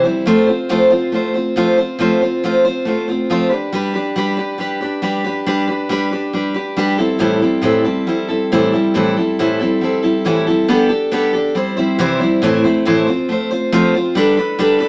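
Hopeful and jangly, this short rock excerpt moves at 138 BPM in a straight 4/4 feel, cut from a longer piece. A single picked steel-string acoustic guitar carries everything alone from start to finish, its full-bodied dreadnought tone sitting up front and spanning A2 to C5. The opening stretch cycles through F, G and Am7, then at 10.7 seconds the harmony shifts into a quicker run of Gadd9, C, Am and F before landing back on Gadd9 at 14.2 seconds. A moderate studio reverb gives the guitar a bit of air around its picked strings. The whole thing lasts just under fifteen seconds, leaving a warm, open-ended impression.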